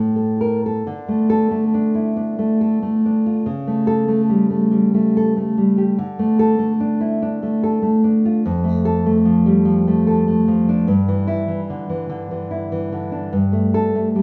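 A romantic piece for solo classical guitar in D minor, this short fragment cut from a longer work moves in a rubato 3/4 at roughly 59-76 BPM, its mood intimate and melancholic. The nylon-string guitar is heard alone from 0.0 to 14.2 seconds, sitting up front with a dark, deep classical tone, the fresh strings plucked with the thumb across a range from F2 to Bb4. After a brief opening before any chord sounds, the harmony settles on D5 at 0.9 seconds, then passes through A7/C#, back to D5, a rootless Dm/F and Em7/G before resting on A7(no3)/G at 13.3 seconds. The guitar is bathed in a generous, wet reverb from a large studio, lending it a spacious, lingering halo while keeping the playing close and personal.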